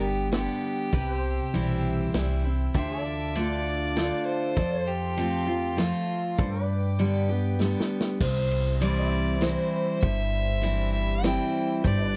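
A clear, lightly vibratoed fiddle carries the solo melody in this down-home, nostalgic honky-tonk country waltz at 99 BPM in C major, over bright picked steel-string acoustic guitar with audible finger squeak, woody pizzicato upright bass and a vintage drum kit with a punchy kick that enters at 0.3 s and plays a fill from 7.6 s into a new section at 8.2 s, while a twangy pedal steel adds background chords with volume swells and a soft, floating sul tasto violin section joins from 0.9 s, all captured in a dry, close 1970s-style studio sound.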